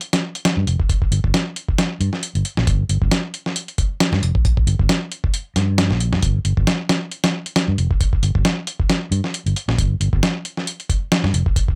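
Breakbeat excerpt at 135 BPM with a swung, energetic, funky feel, built on a gritty, compressed, up-front soul sampler-style drum kit with a thumpy kick, medium-tuned snare and hi-hat, joined at 0.6 seconds by a punchy, amped fingered electric bass ranging from F1 to G2 with tube saturation, all set in light reverb.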